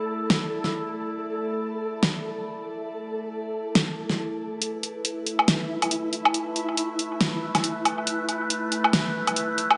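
Deep dubstep at 139 BPM with a half-time, swung feel, heavy and dark, this short cut from a longer piece opens on an up-front, overtone-sweeping drone of ring-modulated, resonant sustained chords with chorus, set against a flickering, grainy, detuned texture, both slow to bloom and long to fade. A layered electronic deep house kit of hi-hat, fat tape-toned snare and woodblock enters at 0.3 seconds, re-recorded in a small room, pushed forward and trailed by analog delay. From 4.6 seconds the piece builds, all inside an echo-heavy, dark-topped mix with a moderate echo-chamber reverb.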